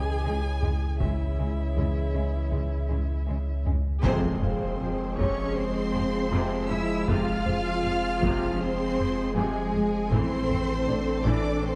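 A steady, straight 4/4 pulse at 79 BPM, driven by a very quiet, close and dry taiko ensemble struck with hard sticks, underpins this tense, futuristic cinematic cue, a hybrid orchestral and electronic film score in F harmonic minor, cut from a longer piece. A lone violin with a focused, vibrato tone and a digital delay carries the melody for the first 3.6 seconds, joined almost at once by a lush, bowed violin section that also plays the top line and carries it on after the solo fades. They are supported by a second violin line, a viola section with portamento, and a distant, even cello section. Underneath, a clean, up-front sine sub bass and a woody double bass section anchor the low end, while a mellow, vintage French horn section and a warbling, lo-fi tape-like pad with chorus and its own reverb hold sustained chords alongside a soft, felt-muted upright piano texture. At 4.0 seconds a smooth trombone section enters with further sustained chords. 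At 4.1 seconds the harmony moves from Dbm to Fm with a band accent and a huge, dark impact, before an Am chord arrives at 10.1 seconds. The whole sits in a moderate concert hall reverb with a dark production.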